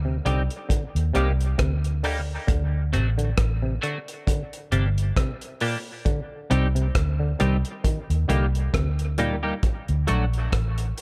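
A dark, round, foam-muted electric bass sits up front and anchors this heavy, hypnotic dub reggae excerpt, moving between G1 and Eb2 from the very start at a slow 67 BPM in 4/4 with a gentle swing on the 16ths. A cloth-damped, thuddy drum kit with a tight kick, hi-hat and rim click joins at 0.3 seconds, its rolled-off top keeping it soft-edged yet close. A bright, clean, compressed semi-hollow guitar plays accompaniment through analog chorus, a high-pass filter and dub echo, and a filter sweep shapes its sound through the first 6.1 seconds. Lower in the mix, a stringy, mellow muted clav runs arpeggios through a combo amp, trailing its own dub echo. The harmony cycles through Cm, Eb, D and Gm before a brief new section lands on D at 9.6 seconds, all wrapped in light reverb and small-room ambience.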